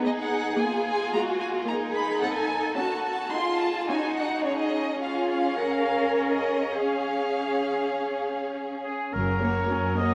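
A quick, lively and graceful classical-period orchestral movement at 97-112 BPM in 4/4, played with a rubato feel. It opens in G# minor with a focused, vibrato-rich violin section carrying the melody over a second violin line, smooth, even violas and an expressive, up-front cello bass. Near the close an up-front oboe with a vintage tone adds a second line from 8.8 seconds, while the bowed double basses sound briefly at 9.1 seconds as the harmony settles on F#, all bathed in the long wash of a vast cathedral reverb.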